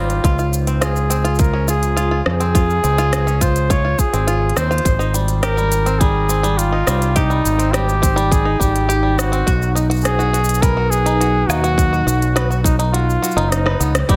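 Folktronica with a hopeful, pastoral mood, moving at 104 BPM in a straight 4/4 and cut from a longer piece. A clear flugelhorn carries the melody up front, with light vibrato, scooped notes and a smooth top, its lines trailed by digital delay. Beneath it a bluegrass banjo picks twangy, percussive arpeggios, while a warbly, lo-fi pad sits in the background with nostalgic, detuned sustained chords colored by chorus, phaser and its own reverb. A growling, overdriven fingered electric bass holds the low end up front, and an organic electronic drum kit with crisp hats, rim clicks and shaker rides over a tight electronic kick, both re-recorded in a large room. The harmony moves from Dbmaj7 to Abmaj7 to B, and near the end the kick drops out at 12.9 seconds, a drum fill follows, and the band hits an accent at 13.9 seconds. The whole mix sits in light reverb and digital ambience.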